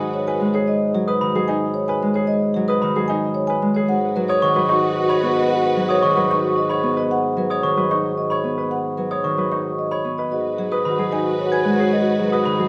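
A straight, even pulse in three drives this meditative yet urgent stretch of minimalist classical pattern music, cut from a longer piece and resting on a G#m7 chord. A soft-malleted marimba, round and dark, carries the melody, while an up-front, fingerpicked Celtic harp rings out a low accompaniment beneath it. A brilliant baby grand piano spins arpeggios with long sustain, and from 1.1 seconds a bell-like glockenspiel struck with soft plastic mallets adds higher arpeggios with a boxy small-room tone. A mellow bassoon with light vibrato anchors the bass on a single pitch, and a distant French horn and a lush, bowed symphonic string section sound together in brief passages, such as from 3.9 to 6.9 seconds. A generous large-studio reverb surrounds the ensemble.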